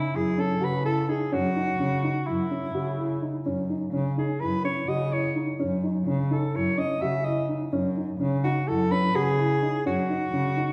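The recording sits in a wet recital hall with about 1.5 s of reverb, heard from further back in the room, which gives this short cut from a longer contemporary chamber piece a hypnotic, pensive air. It moves in an uneven 9/8 at 253 eighth-note beats per minute, with a straight feel in F# dorian, and the harmony rests on an F#5 chord from the start. A mellow soprano saxophone carries the melody between E4 and E5, played in a jazz style with vibrato and scooped notes, sounding roomy and distant even while it stands up front. Beneath it, a dark baby grand piano plays arpeggios in a narrow span from C#4 to F#4, its tone boxy and mellow. A single bowed cello enters at 0.1 s and holds the bass from F#2 to C#3, up front with a nasal, reedy gut-string tone, light vibrato and a smooth top in a period style. The cello drops out at about 10.5 s, and the saxophone and piano carry on until the fragment breaks off at about 10.7 s.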